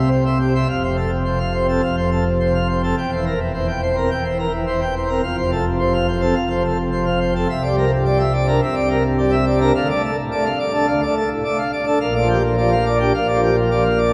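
Brilliant and jubilant, this classical organ toccata in straight 4/4 is cut from a longer piece, with a solo pipe organ on full plenum, its mixtures and romantic voicing spanning from E1 to G5. The harmony moves from C to F and C7/E, then through C9 and Dm before settling on Gm7/Bb near 12.0 seconds. A long, wet cathedral reverb surrounds the organ, heard from further back in the room.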